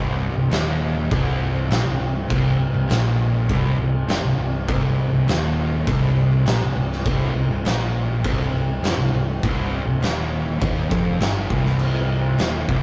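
A straight 4/4 pulse at 101 BPM drives this sludgy, ominous stretch of stoner and doom metal in C minor, cut from a longer piece and holding on a single C minor chord throughout. Two distorted fuzz guitars pick a low riff from the start, sitting in the background: one thick and warm, the other darker and compressed. A fingered electric bass growls beneath them through overdrive, an octave below the guitars. At 0.5 seconds an oversized, low-tuned acoustic drum kit crashes in up front, with a boomy kick, a fat snare and dark cymbals, its gritty, saturated sound pumping in a big room. The whole take has the rough feel of a rehearsal-room recording, with tube saturation and a moderate small-room reverb thickening the murk.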